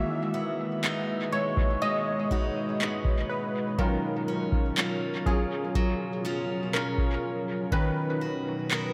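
Late-night and moody, this contemporary R&B piece is led by a round, detuned analog keys solo with chorus and dub echo over bright, picked steel-string acoustic guitar arpeggios with finger squeak, while a booming, overdriven drum machine of deep kick and handclaps arrives at 0.8 s and a dark ambient pad with sidechain pumping enters at 1.0 s, all set in an echo-heavy mix with moderate spring reverb as the chords move from Emaj7 to Ebm9 to Bmaj7.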